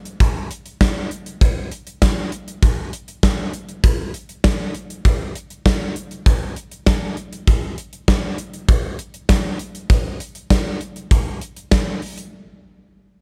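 A gated 80s drum kit opens this pop cut at 0.1 s and carries it to the end at 12.3 s, playing hi-hat, kick drum and snare drum in a straight 4/4 at 99 BPM. The acoustic kit sits up front, with a punchy kick and a medium-tuned snare set in a bright stone room that is gated. The overall production is dark and warm, touched with light reverb. The mood is cool and driving throughout this single section, which is taken from a longer piece.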